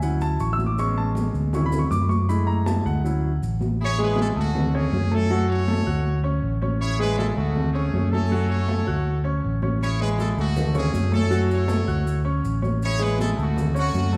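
Sunny and danceable, this salsa clip features a bright, woody upright piano up front as soloist for its first 3.8 seconds over a round, amped fingered electric bass, ringing high-tuned congas and grainy maracas in the background, until a brilliant pop-style horn section with light vibrato takes the melody, the whole ensemble heard from further back in a wet, large studio reverb.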